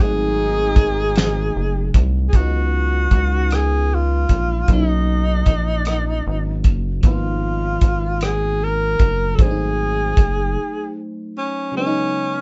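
A lightly reverberant live-room sound with dulled highs frames this sultry, late-night slow R&B fragment in six-eight. A breathy, whispered tenor saxophone carries the melody up front with vibrato and scooped notes over glassy, bell-like FM electric piano treated with chorus and phaser, while a mellow horn section adds stabs in the background until 1.9 s. A rubbery, hollow square-wave bass sits beneath a cloth-damped, thuddy drum kit with a fat snare and tight kick, both up front, until the drums stop at 10.4 s and the bass at 10.6 s for a brief break.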